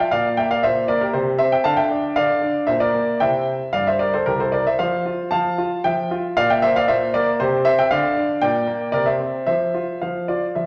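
In a rubato 3/4 at 115 BPM, this cheerful, elegant classical-period piano sonatina in F major, a 10.7-second cut from a longer piece, features a solo concert grand with deep bass, a smooth vintage tone and an up-front presence, ranging from C2 to A5 through a recital hall's wet reverb as its harmony moves among Bb, C and Dm before a chordless moment at 7.9 s and a cadence through Gm/Bb and C7 to a bare F5 close.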